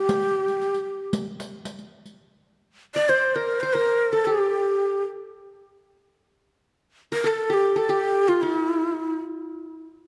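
An Arabic maqam ensemble piece at 115 BPM in a straight 4/4, festive yet stately, cut from a longer work and tuned to A4 = 442 Hz. A breathy, close-miked ney carries the melody up front with vibrato and an unsteady, tongued delivery, while a riq's bright jingles sound only from 0.1 to 2.1 seconds, and a plucked qanun with a bright-edged, triple-strung tone adds a second line from 3.0 seconds. The production is dark and warm, set in a moderate concert-hall reverb.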